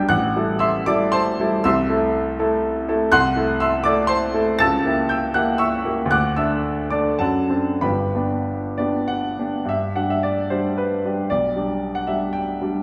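A clear, present baby grand piano opens on an A minor seventh chord, playing alone in a passionate, lyrical romantic character piece in G major. The playing moves in 3/4 with a free, rubato feel, the tempo flexing between 92 and 126 BPM. The harmony drifts through a diminished chord toward D and D7, then settles onto G around 7.8 s, spanning the keyboard from deep bass notes up into the high treble. A new section begins at 9.7 s, continuing to G over B before this fragment of a longer piece breaks off at 12.8 s. The piano sits up front in the sound, yet a wet recital hall reverb gives a sense of hearing it from farther back in the room.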